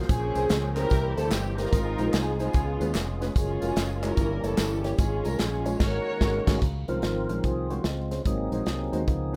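A jubilant, hopeful uptempo gospel groove in Db major at 147 BPM with a swung feel opens with a punchy, airy drum kit and a dark, round fingered electric bass up front, as a woody upright piano sits in the background and a fat tonewheel organ holds sustained chords through fast rotary speaker and light overdrive. Intimate bowed strings carry the melody with vibrato and a smooth top, while tambourine and handclaps add background percussion over rich extended chords until a band accent at 5.8 seconds. The strings drop out at 6.6 seconds, when the organ takes a solo over the rhythm section in a rough home-demo mix with moderate reverb.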